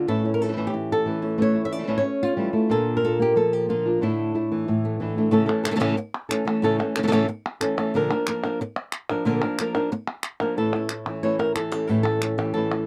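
A dry, close studio sound frames this fiery, dramatic flamenco fragment at 183 BPM in A phrygian dominant, where a bright, fresh-stringed fingerpicked guitar carries the melody up front over a second, darker guitar's stabs moving between A and Bb, with crisp palmas hand claps entering at 5.5 seconds and the darker guitar dropping out until it returns at 10.6 seconds.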